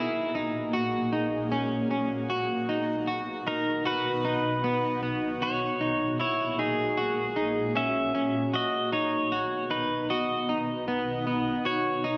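Dream pop with an ethereal, blissful mood, where a warm, clean pedal steel guitar carries the slide melody through delay over bright, picked arpeggios from a chorused semi-hollow electric guitar and a cloudy, evolving granular pad holding blurred chords, all bathed in a lush hall reverb across this 12.2-second excerpt from a longer piece.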